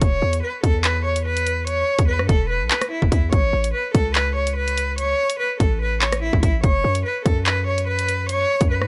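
A bowed cello, a hard-hitting 808-style bass and a drill drum kit all start together at 0.0 s in this dark, tense drill cut, taken from a longer piece and moving at 145 BPM in 4/4 with a half-time feel. The cello, played by a single player, carries the melody between E4 and C#5, its tone rich and smooth with vibrato and an even bowed line. Underneath, the 808 sits between E1 and A2, a heavy sine with a noise layer and a fast, punchy attack that decays after each hit. The electronic kit sits forward, combining a hard-clipped kick, bright hi-hats, handclaps and rim clicks with a tape-warm edge. Chords move from E5 to A at 3.3 s and F#sus4 at 6.6 s, and the whole thing is a dry, gritty hardware recording with the cello, bass and drums all placed up front.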